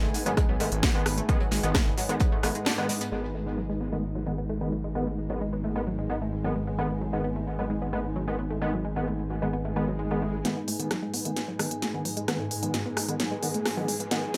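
A punchy, up-front electronic kick enters at 0.4 seconds in this relentless, intense G# minor peak-time techno excerpt at 131 BPM, dropping out by 2.3 seconds as a cracking techno kit with smooth, filtered hats and rim clicks and a very quiet, dark acoustic studio kit carry the opening drop. A gritty, saturated synth bass pumps beneath until 10.4 seconds, while a round, nasal analog pluck riff, edgy sync-sweep polysynth stabs soaked in dub echo, a swarming, tense drone and a blurred granular cloud pad all breathe with sidechain pumping. A very quiet electronic swell and riser rises from 9.7 seconds, and from 10.4 seconds the techno kit returns with a drum fill to drive the build-up, all set in an echo-heavy mix with a moderate plate reverb.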